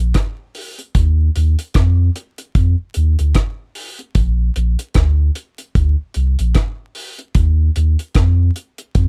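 A laid-back 75 BPM groove in 4/4 with a 58% swing on the sixteenths sets this short roots reggae excerpt in Bb major, its mood uplifting and unhurried. The warm sub bass begins at 0.0 seconds, moving between Bb1 and F2 with a round, sine-like tone, a fast attack and sustained, mellow notes placed up front. A deep reggae drum kit joins at 0.1 seconds, acoustic and dry with a dark, smooth character, its tight kick, hi-hat and rim click sitting close and present. The pairing of bass and drums carries the whole passage through to 9.1 seconds. Vinyl crackle and very little reverb give the recording an intimate, close feel.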